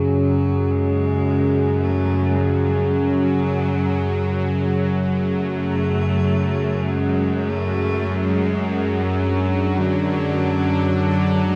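A cavernous cathedral reverb with a dark, warm production hangs over this short cut from a longer dark ambient drone, set in F# minor at a slow 53 BPM in 4/4 with a straight feel. Up front sits a tense, string-like bowed drone built from detuned sawtooth unison with a noise layer and vibrato, holding the low register with slow attack and long release inside its own reverb. Around it, a sweeping resonant pad sustains bright sawtooth chords through a filter swell and chorus, evolving steadily as the harmony moves from F# minor to D over F# at 7.5 seconds. A distant, focused solo cello fades in across the whole passage, its bowed melody carried by vibrato and a diffuse ambient delay. Beneath everything, an eerie, inharmonic FM bell with a vintage, warbling chorus plays barely audible arpeggios until 7.5 seconds, its fast strikes decaying into long tails.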